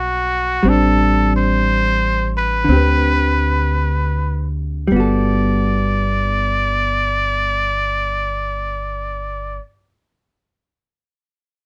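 A jazz ballad in G major, intimate and romantic, moving at a slow 51-62 BPM in 4/4 with a swing feel on the eighth notes, and easing further in tempo over its first 4.9 seconds. A trumpet with a straight mute carries the melody up front, its nasal, bright tone shaded with vibrato and jazz-style scooped notes. Beneath it, a vintage hollow-body electric guitar supplies clean, picked accompaniment with a dark, compressed sound. An acoustic upright bass, played pizzicato on steel strings, sits up front with a woody, warm body in its low register. The harmony moves from Gmaj9 through Am7 and D7sus4 before returning to Gmaj9 at 4.9 seconds, where a new section begins, all bathed in light reverb in this short cut from a longer piece.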